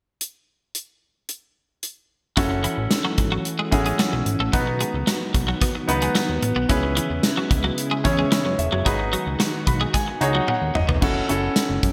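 A punchy, up-front gated drum kit with bright cymbals and a big-room sound opens this moody, nostalgic 1980s-style pop excerpt alone before the rest of the band enters at 2.4 s. A clear baby grand piano, a fat saturated analog bass, a twangy twelve-string electric guitar riff drenched in chorus and digital delay, and a warbling unison pad in the background move through F#m7, B, C#m7 and G#m7. A piano fill arrives at 9.4 s and a drum fill at 10.5 s, all within a bright 1980s-style digital production.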